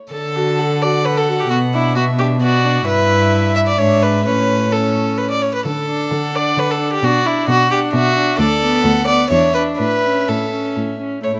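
A quick classical-period movement for string quartet in 3/4 at 130 BPM, this graceful, spirited passage is played with rubato in D major before moving to A major at 8.4 s. Each of the four bowed, gut-string players uses a period style: the first violin carries the reedy melody high above, the second violin's airy bow and nasal tone sit close and up front on the second line, the viola adds smooth-topped accompaniment, and the dark cello anchors the bass. Close, detailed microphones and light reverb frame this short section cut from a longer piece.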